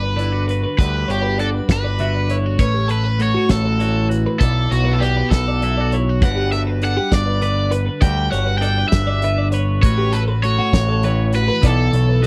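A cranked stack guitar carries the melody in this wistful, playful slice of math rock and midwest emo, its overdriven, picked tone thickened by a slapback echo. Two clean twelve-string electric guitars sit beneath it, one picking the chordal accompaniment and the other, a little lower in the mix, spinning arpeggios in a higher register, both sounding twangy and compressed. A growling picked electric bass, overdriven and up front, anchors the low end, while a loose indie drum kit joins at 0.2 seconds with a fat snare, tight kick and hi-hat. The straight 6/8 groove moves through a cycle of Gmaj7, A69 and B7sus4 that repeats before the clip breaks off at 12.3 seconds. The whole thing has the dry, close sound of a 1970s-style studio, with a touch of small room reverb.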